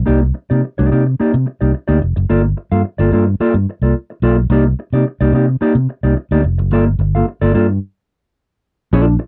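Joyful and celebratory, this short disco clip pairs a round, dark, amped fingered electric bass with a mellow, clean, fingered electric guitar carrying tube saturation, both up front in a dry, close 1970s-style studio sound as they alternate between Cm9 and Gm9 before a stop from 7.8 to 8.9 seconds.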